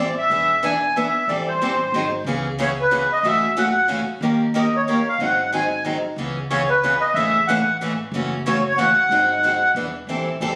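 A reedy, sweet accordion carries the melody from the start in this fiery, bittersweet cut from a longer acoustic string-swing tune in 3/4. Alongside it are a bright, boxy picked steel-string guitar with audible finger squeak and a quieter, woody, thumpy pizzicato upright bass on gut strings. The accordion's light tremolo tuning and vintage, band-limited tone sit up front in a moderate club ambience captured on a phone in the room, and it drops out at 9.7 s while guitar and bass ring on briefly.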